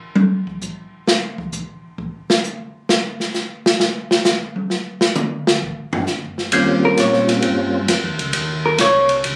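An up-front acoustic jazz kit with a boomy kick and dark cymbals plays alone for the first 6.5 seconds of this bluesy, soulful soul jazz organ trio fragment, swinging at 132 BPM, before an Eb13 arrives with a percussive tonewheel organ melody with chorus vibrato and a slow rotary speaker, a mellow, round organ bass with key click beneath it, and a clean, compressed hollow-body electric guitar picking accompaniment from 6.8 seconds, all captured on a phone in a small, reverberant club room.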